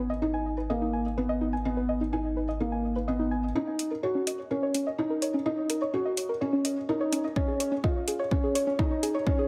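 A felt-muted upright piano leads this hypnotic, cinematic piano-and-strings electronica passage in Eb minor at 126 BPM, its intimate, mellow riff sitting up front with audible action noise and a trail of delay, over a nasal analog bass that pumps with the sidechain and a gentle, chorused pluck arpeggio with a dusty cassette-tape tint. From 3.6 seconds a build-up begins as a filter sweep moves across the arpeggio, metallic, overdriven electronic hi-hats join at 3.8 seconds, and a deep, distorted kick punches in at 7.4 seconds as the chords move from Abmadd9 through Ebm7 to Dbadd9. A lush hall reverb wraps the whole cut, which is lifted from a longer piece.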